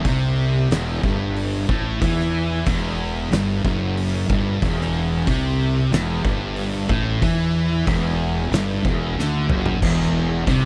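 A straight 4/4 pulse at 92 BPM drives this hypnotic, brooding stoner and doom metal excerpt in E minor, where a sludgy, double-tracked overdriven guitar and two thick fuzz guitars in the background grind out a riff on Em over a punchy, up-front fuzz bass and an oversized low-tuned drum kit with a boomy kick, fat snare and dark cymbals in a bright stone room, capped by a drum fill from 9.2 to 9.8 seconds before the chord drops away, all in a dry mix with little reverb.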